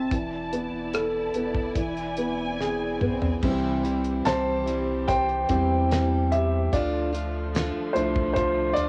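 A melancholic, emotional pop ballad at 73 BPM opens on a concert grand piano with a deep low end, joined by close, lush, woody bowed strings with vibrato, a round sine sub bass, and a dry 70s drum kit with a fat snare and tight kick, the piano, strings and drums all carrying cassette tape color in a small home room. The harmony moves from E7sus4 to E7, and at 2.6 s a very quiet electronic swell sounds under a drum fill. From 3.4 s the piano takes a solo over C and Dm while a picked, plugged-in steel-string acoustic guitar enters with arpeggios through analog delay.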